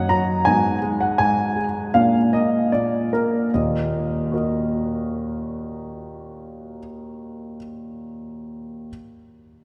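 In a rubato 4/4 that slows through its first 3.5 seconds, this serious, elegant fragment of a classical-period piano sonatina features a solo concert grand, intimate and up front with deep bass and audible action noise, moving through Abm, Bb and Ebm chords inside a wet cathedral reverb with a long 6.0-second decay.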